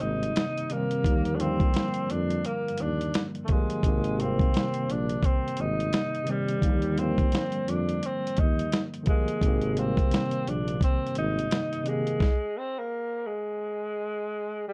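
A breathy tenor saxophone carries the melody up front, its subtone voice soft in attack, with vibrato and scooped notes that feel whispered and intimate, though also distant and roomy behind a low-pass filter. This nostalgic, mellow lo-fi hip hop piece moves at 86 BPM in 4/4 with a swung sixteenth-note feel, set in Ab lydian and drifting between Abmaj9 and Ebmaj9 chords. A worn, slightly out-of-tune tine electric piano plays the accompaniment through its built-in speakers, colored by cassette tape and a low-pass filter, while a dark, close-miked tuba supplies a jazz-style bass line with vibrato. A dusty, gritty sampler-style soul drum kit enters at 0.2 seconds, compressed and up front, with a thumpy kick, a medium-tuned snare and hi-hat. The band drops out and the drums stop at 12.4 seconds, leaving the saxophone alone until 14.7 seconds in this section cut from a longer piece, all within a moderate studio ambience and a dark, warm production.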